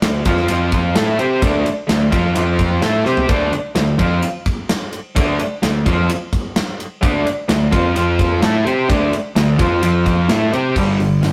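A straight 4/4 pulse at 129 BPM drives this brooding classic rock excerpt in D minor, cut from a longer piece and running about 11.3 seconds. Two electric guitars play the riff throughout, one dark and overdriven, the other bright, distorted and pushed up front, both picked across a range from G2 to C5. Beneath them a picked electric bass carries a fuzzy, overdriven tone with a warm, amped character. The gated 80s drum kit is big, airy and polished, with bright cymbals, a medium-tuned snare and a tight kick, and it breaks into a fill at 3.1 seconds. The harmony shifts mostly between F5 and Dm before moving through Am7 and landing on G5 at 10.8 seconds. A moderate stone room reverb and tube saturation give the whole track the rough, driving feel of a rehearsal-room take.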